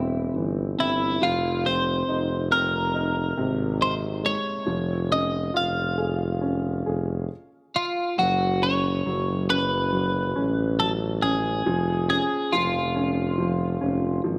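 This pop ballad moves at a slow 69 BPM in a straight 4/4, its heartbroken, melancholic mood carried through a short fragment of a longer piece tuned to A4 = 441 Hz. A clean, compressed twelve-string electric guitar sits up front with the picked melody between E4 and F5, coloured by a phaser and a slapback echo, and it falls silent at 14.2 s. Beneath it, an upright piano with a woody tone and short sustain supplies the accompaniment, while a warm tuba with light vibrato holds the low bass line, also placed up front. The harmony drifts from C/E through Fm7 and Db/F, then turns to F#m at 8.2 s as the opening passage repeats, ending on C#/E#. A moderate echo chamber reverb with a 2.2-second decay surrounds the ensemble, lending the ballad a spacious, mournful air.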